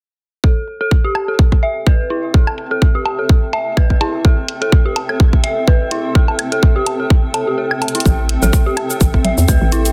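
Dense, heavily limited digital ambience frames this quirky, clinical minimal techno cut, where a tight, up-front kick and tape-warm hi-hat and cabasa drive beneath an eerie, inharmonic FM synth bell riff with chorus, phaser, pumping and a filter sweep, while a bright granular cloud pad fades in, woodblock and congas trail dub echo, and after the kick drops out at 7.6 seconds and a drum fill hits at 7.8, a hollow, bouncy FM bass enters at 8.1.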